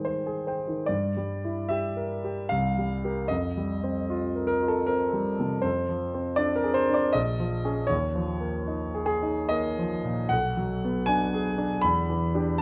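Flowing in a rubato 3/4 at 69-80 BPM, this wistful, nocturnal fragment of impressionist classical solo piano, cut from a longer piece, features a clear, open concert grand with deep bass sitting up front in a moderate recital hall, drifting through colorful chords such as Abmaj7, F9sus4 and Bm6 across its 12.6 seconds.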